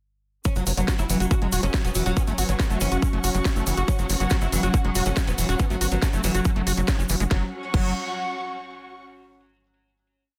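Intense and hypnotic, this short psychedelic trance piece drives at 140 BPM on an up-front, tape-warm four-on-the-floor kick, a cracking snare with bright hats and crash from a drum and bass kit, a grainy tube shaker in the background, and a punchy rolling sixteenth-note sequencer bass, while a woody, plectrum-plucked oud with phaser, digital delay and sidechain pumping repeats a riff over a pedal note beside a squelchy, screaming distorted acid line that carries a filter sweep from 0.5 to 7.3 seconds, all wrapped in lush bowed symphonic strings, a very quiet morphing wavetable pad drone and a faint formant-sweep wobble bass, before the strings hold a final chord alone until 9.0 seconds.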